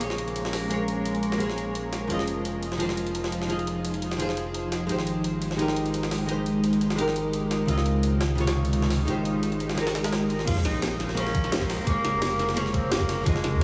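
A dark, clean archtop guitar sits up front, its picked, compressed hollow-body tone bathed in lush chorus and a diffuse ambient delay as it carries the accompaniment through this soulful, rolling liquid drum and bass excerpt at 172 BPM in 4/4, in Bb dorian. Beneath it, a glassy FM pad holds slow-blooming, ethereal chords with ensemble chorus and its own reverb, pumping against the beat. A deep, saturated sub bass underpins the harmony, while a gritty, tape-toned sampler-style jungle kit supplies pitched-up hi-hats and a high-tuned snare, both thinned by high-pass filtering. The chords move from Bbm9 through Fm7, Abmaj7 and Dbmaj9, then back to Abmaj7 before returning to Bbm9. At 10.5 seconds the drop arrives with a barely audible sub-drop impact, a layered drum and bass kit with a cracking snare and crash cymbal, and a knocking electronic kick that runs until 13.3 seconds. A distant, roomy tenor saxophone also enters there with a light vibrato and its own ambient delay, and the whole mix is soaked in a huge, dreamy reverb.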